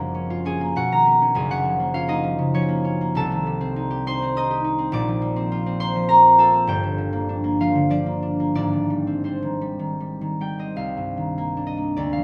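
A concert harp plays alone throughout this short classical excerpt, its acoustic tone warm and ringing as fingerpicked notes spread from a deep Gb1 up to Eb6. The mood is gentle and mysterious, moving in a rubato 3/4 with the tempo drifting between 73 and 105 BPM. Opening on lush Gbmaj7 and Badd9 colors, the harmony settles into C dorian from 3.2 s, passing through Cm6, Bbadd9, Gm9 and Abmaj7. At 10.8 s a new section begins on a Cm11 chord before the clip breaks off at 12.2 s, cut from a longer piece. The harp sits up front, yet the listener seems placed further back in a stone room whose moderate reverb gives each note a soft halo.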